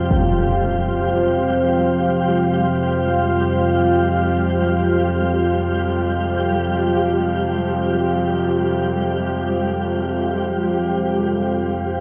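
From the opening moment, a low analog drone, a deep dark pad and a flickering, grainy texture rise together on a single Fsus2 chord, setting a dark, unsettling mood in free time. The drone sits down low, its vintage sawtooth and pulse-wave tone warbling and evolving under chorus, with slow attacks and long releases that keep it sustained and up front. Above it, the pad holds moody, mellow chords in a higher register, its unison sawtooth and sine layers thickened by a sub octave and bathed in chorus, built-in reverb and shimmer reverb. Slightly further back, the granular texture adds a detuned, triangle-based shimmer of flickering grain in the middle range, carried on its own built-in and shimmer reverb. The whole piece sits in a huge, wet ambient space with a long decay, and all three parts hold steady from 0.0 until this 12-second cut from a longer work ends.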